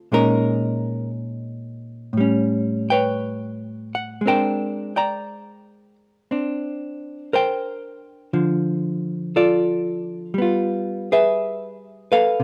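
A slow swing feel at 59 BPM in 4/4 carries this jazz ballad, its eighth notes lightly lilted, in a short excerpt cut from a longer piece. The mood is intimate and romantic, set entirely by a solo hollow-body electric jazz guitar that plays from start to finish, across 12.4 seconds. Its tone is dark and clean, picked and sitting up front, ranging from A2 up to Bb5. The harmony moves through rich extended chords, from Bbm7 to A9 and a long-held Abmaj9#11, then settles toward Dm before a tense G7b9 closes the passage. A light reverb gives the recording a soft sense of room around the lone instrument.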